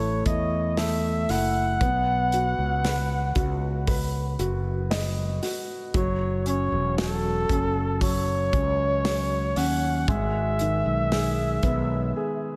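Pop ballad at a slow 58 BPM in 4/4, heartfelt and hopeful, where an up-front mellow flugelhorn carries a jazz-style solo melody with vibrato, a soft attack and a smooth top over a concert grand piano with deep bass, a direct, up-front fretless electric bass, and an acoustic country drum kit with punchy kick and medium-tuned snare that enters at 0.3 seconds, in a dreamy mix soaked in lush hall reverb as the chords move from A5 through Badd9 and F#m7 to Emaj7/G# before a brief break at 12.2 seconds in this excerpt from a longer piece.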